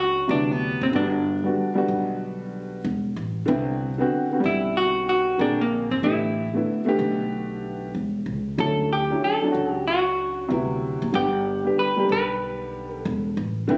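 Jazz-hop at 94 BPM with a swung sixteenth-note feel, this cool, smooth fragment of a longer piece puts a clean, picked hollow-body electric jazz guitar melody up front over a dark, worn upright piano with audible action noise and a slightly detuned, boxy tone, while a woody, thumpy pizzicato upright bass on gut strings sits lower in the mix, all caught by a phone in a small room with light reverb, the guitar stopping at 13.3 seconds just before the others end at 13.8.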